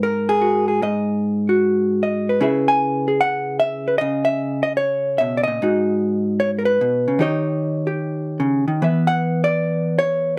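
A swung 4/4 pulse carries this short solo jazz passage, cut from a longer piece, with a cool, smoky mood. A single vintage hollow-body electric guitar plays alone from 0.0 to 10.4 seconds, its clean, picked tone dark and compressed and placed up front. The guitar's range spans G#2 up to G#5. The harmony moves from G#7(no3) to C#m7 at 2.4 seconds, then through G#m7 and D#7 before landing on E5 at 8.8 seconds. Close, detailed miking and light reverb keep the sound intimate and clear.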